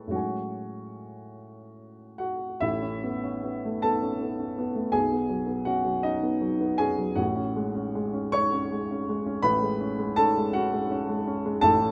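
A dark baby grand piano plays alone throughout this brief neoclassical minimalist fragment, its mellow, natural tone sitting up front and spanning A1 to C#6. The mood is reflective and melancholic, moving in a rubato 6/8 at roughly 46-56 BPM counted in dotted quarters, in F# dorian with the instrument tuned to A4 = 443 Hz. An opening passage rests on F#madd9/A before a second section begins at 2.6 s, drifting through Aadd9 and Badd9 and settling back on F#madd9/A at 7.2 s. A moderate small-room ambience surrounds the instrument, lending an intimate sense of space. Cut from a longer piece, the recording ends at 11.9 s.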